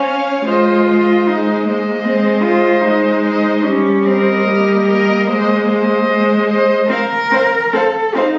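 Captured on a phone in the room with a light wash of studio reverb, this excerpt from a slow, romantic string quartet movement moves at 70-79 BPM in a rubato 4/4, its mood solemn and yearning. Two muted violins carry the melody and a second line, the melodic voice sounding distant and veiled, while the con sordino viola sits close and up front with dark vibrato accompaniment. The muted cello enters at 0.5 s with a light vibrato bass, also placed up front, as the harmony moves from Ab through Eb/G back to Ab and on to F7/C.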